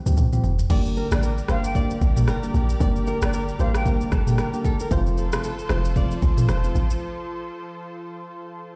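Heard on a big sound system in a bare room, this sunny, breezy afrobeats excerpt opens with a drum fill on a tape-warm electronic kit of deep kick, rim click, shaker, toms and crash, joined by a round, percussive log drum bass and mellow, warbling electric-piano-like synth keys, while from 0.7 s a thick, detuned unison pad pumps beneath a dark, fingerpicked flamenco guitar riff with digital delay and a pure, distant silver concert flute adds a brief vibrato melody, before the break at 7.0 s leaves the pad sounding alone.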